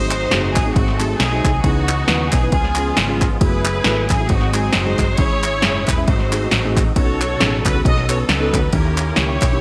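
A swung 4/4 pulse at 135 BPM drives this uptempo gospel fragment in C# minor, fervent yet solemn. A punchy analog drum machine sits up front from 0.1 seconds, its kick, snare and ride cymbal carrying a tape-warm edge and gated reverb, while crisp, close group handclaps join over the same span. A dark, round hollow-body electric bass anchors the low end, and a mellow tine electric piano with analog chorus fills in the accompaniment. In the background, a fat, lightly overdriven tonewheel organ holds sustained chords through a slow rotary speaker, its key click and third-harmonic percussion adding bite. Over the top, a lush, distant string section carries the melody with focused ensemble vibrato, moving through tense changes such as G#7b9, C#m9, F#m11 and B9 in a bright 1980s-style digital production with light small-room ambience.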